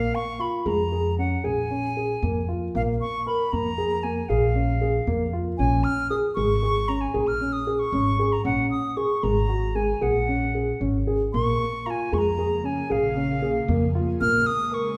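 Contemporary chamber music in 11/8 at 231 BPM (eighths), this pensive yet urgent passage in Bb minor, cut from a longer piece, sets a crisp, bright wooden flute melody over dark, mellow concert grand piano arpeggios with audible action noise and a woody pizzicato upright bass, all three up front. The harmony moves from Bb7(no3) to Db5 to Bbm7, and at 12.5 s an ethereal, detuned pad with ensemble chorus and built-in reverb slips in with slow-attack sustained chords. The whole ensemble sits in a wet recital hall, heard from further back in the room.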